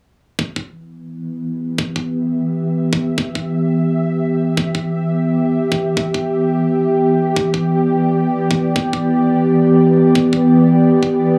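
This tense, dark excerpt of half-time drum and bass opens at 0.4 seconds with an electronic kick drum. The kick is layered and knocking, sits up front, and was re-recorded in a small room, with high-pass filtering on both the kick and its room sound. At 1.0 seconds a bowed-like drone enters, holding sustained E minor chords between E3 and E5 with a slow attack, long release and vibrato. The drone's nasal, string-like sawtooth unison carries a noise layer, vintage 12-bit sampler grit, built-in reverb and sidechain pumping, while a filter sweep shapes it throughout. At 172 BPM in 4/4 with a light 16th-note swing, the half-time feel lends a brooding weight. The kick stops at 11.1 seconds, and the whole has a dry, hardware-recorded character with a touch of light reverb and small-room ambience.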